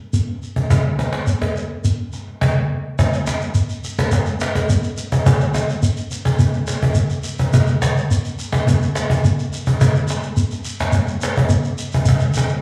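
The recording has a wet, roomy sound, with a large studio reverb around a band playing live together in one space. This is a hypnotic, driving afrobeat groove in a straight 4/4, cut from a longer piece. A snappy cajon with its snares engaged carries the drum part, sitting up front while still carrying the air of a big room. Alongside it, a grainy, mellow shekere adds acoustic percussion, also close in the mix. Both instruments play together from 0.1 seconds to the end at 12.6 seconds, and the music moves into a new section at 3.0 seconds.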